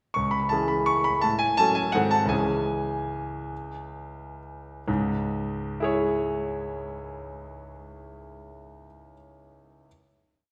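A clear grand piano plays alone throughout this brief, nostalgic classical waltz in three, shaping an elegant single-line melody over sparse bass and held chords with a rubato feel. The smooth, vintage-toned instrument sits up front with short sustain, surrounded by a wet recital hall reverb. The phrase slows from 1.8 to 4.9 seconds before settling onto a final chord that rings until about 7.7 seconds.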